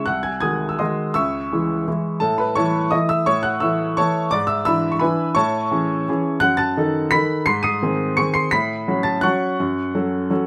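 This classical piano waltz has a nostalgic, elegant mood, moving in 3/4 at 170 BPM with a rubato feel that lets the pulse breathe. A solo upright piano carries the whole 10.5-second excerpt, cut from a longer piece, ranging from B#1 up to D#7. Its tone is woody and polished, with long sustain and audible action noise that gives the performance an intimate, present character. The harmony opens on G#7/B# and passes through C#m, A, E7/G#, Amaj7 and D#dim/F# before landing on G# near 7.5 seconds and settling onto F#m by 9.6 seconds. Close, detailed microphones and very little reverb keep the instrument up front and clear in a dry, immediate sound.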